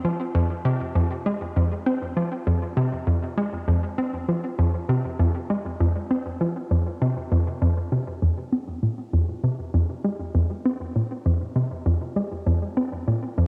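Drenched in a wet spring reverb and the lo-fi character of a home cassette recording, this hypnotic, mysterious ambient fragment in F minor at 99 BPM, tuned to A4 = 436 Hz, features a lone hollow square-wave pluck playing solo for its full 13.5 seconds between F2 and C4, its detuned, bouncy tone carrying a noise layer with a fast attack and short decay, and sitting up front through chorus, cassette tape coloring and tape echo.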